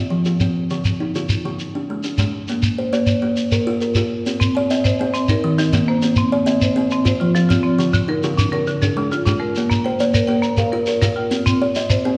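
Southern African traditional music in an mbira-style interlocking cycle at 136 BPM in a straight 12/8, tuned to an equiheptatonic scale on C, where an up-front kalimba with a hollow, ringing thumb-plucked tone spins rippling arpeggios from the start, a close, grainy shekere keeps time, and a bright, hard-mallet rosewood marimba joins at 4.4 seconds with percussive arpeggios over a cycle of Dm, Bb, Cm and F chords, all set in a reverberant recital hall in this excerpt from a longer piece.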